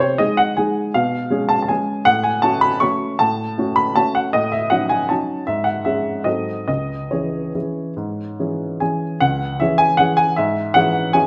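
A clear, woody upright piano plays alone and sits up front in this brief classical waltz, cut from a longer piece. The mood is elegant and wistful, and the triple-metre lilt bends freely with rubato, so the pulse breathes rather than holding steady. Its short sustain gives each chord a present, intimate quality, while a moderate recital-hall reverb adds a gentle sense of space around the instrument. The harmony moves through dark, yearning chords, settling onto a minor resolution at 6.7 seconds. A new section begins at 9.2 seconds and carries the phrase on until the cut at 11.3 seconds.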